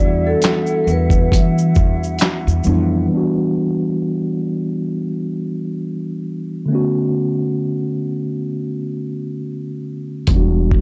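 A mellow tine electric piano sits up front for the whole excerpt, its clean, direct tone coloured by cassette tape as it carries the accompaniment over Em9 and Bm9 chords in E dorian. This lo-fi hip hop fragment moves at a relaxed 67 BPM in 4/4 with a light swing on the sixteenths, and its mood is hazy and reflective. At the start, a soft-mallet vibraphone plays a short, airy, ringing melody with slow motor vibrato and tape echo, while a hollow small flute group holds pure, sustained chords alongside it and a woody, growly pizzicato upright bass with tube saturation plays from the first moment. A compressed, thumpy sampler-style drum kit with kick, medium-tuned snare, hi-hat, shaker and handclaps joins in at 0.4 seconds, and the drums carry vintage 12-bit grit. The other parts fall away by 3.1 seconds, leaving the piano alone until bass and drums return at 10.3 seconds, all within a dry, small-room hardware recording.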